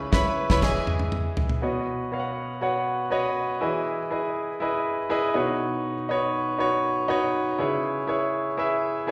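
Hopeful and warm, this short piano-driven pop fragment, cut from a longer piece, opens with a band accent and a drum fill across its first 1.6 seconds. The damped 70s drum kit sits up front, with a fat snare, tight kick, dark cymbals, crash and toms. A lush, bowed violin section with vibrato plays a close second line, while a thick, detuned sawtooth analog bass sits in the background, and both stop at 0.8 seconds. Once the drums fall away, the clear concert grand piano carries on alone until 9.1 seconds, intimate and polished, with long sustain, deep bass and audible action noise. The chords move through C#m7, Emaj7 and Badd9, returning to C#m7 near the close, and the recording sits in a wet recital hall reverb that places it in a church or concert hall.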